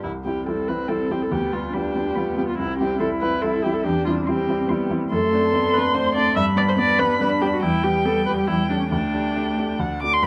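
A clear baby grand piano, a muted viola and a muted cello begin together. Then, at 0.5 seconds, a muted violin enters with the melody. The music is a quick, graceful and spirited classical-period movement for piano quartet in C major, moving at 142 BPM in a straight 3/4. The violin, viola and cello each play con sordino as single bowed voices, giving a dark, veiled colour. The violin sings with vibrato and portamento over a smooth top, and the cello carries a second line beneath it. The viola sits up front with light vibrato in the accompaniment, beside the natural, short-sustained piano. The harmony moves from C through G7/D, D7/F# and Em toward Dsus4 and a final D before this passage, cut from a longer piece, ends at about 10.3 seconds, all captured by close, detailed microphones with light reverb.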